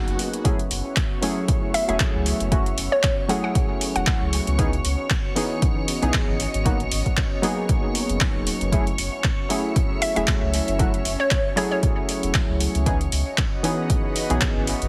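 A swung sixteenth-note groove in 4/4 drives this deep, late-night deep house piece, anchored by a punchy electronic kick placed up front and a layered drum kit of handclaps and metallic hi-hats. Beneath it, a round sine sub bass holds sustained, mellow low notes with sidechain pumping, as do the keys, the pad and the string machine. Detuned sawtooth analog keys play decaying stabs up front, shaped by a filter sweep, chorus and tape echo. An airy, breathy pad and a silky, warbling string machine sit in the background with slow attacks and long releases. A hollow, bouncy square-wave pluck carries the melody in two short phrases, from 1.7 to 4.3 seconds and again from 10.0 seconds; its detuned tone is thickened by a sub octave and a noise layer and trailed by tape echo. Light digital reverb surrounds the mix, which has a heavily compressed, radio-like sound.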